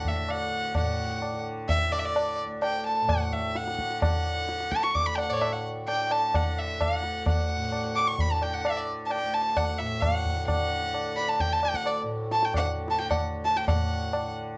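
A single bright, up-front violin with light vibrato and an airy bow carries the serene, devotional melody of this Hindustani classical excerpt in D raga bilaval, its slapback echo trailing the line over a buzzing, shimmering tanpura drone and high-tuned, ringing tabla, all in 7/4 at 130 BPM, gradually speeding up, and captured in a dry, close, 1970s-style small-room studio sound.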